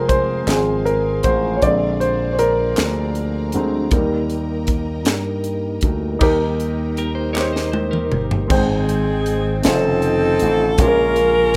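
A grand piano leads from the first moment of this uplifting, jubilant slow gospel excerpt in 6/8 at 52 BPM, its audible action noise and deep bass close up front. Beneath it sit a punchy, envelope-filtered slap bass, a crisp fusion kit with a high-tuned snare, background handclaps, a mellow, flute-like tonewheel organ through a slow rotary speaker, and lush bowed strings that hold chords until 8.5 seconds. A clean, compressed electric guitar with spring reverb adds a brief second line from 7.0 seconds, overlapping a drum fill that begins at 7.4 seconds. Then a close-miked saxophone section takes the melody with vibrato and slapback echo over chords moving from Abmaj7 to Bbm7, all in a rough home-demo mix with light reverb.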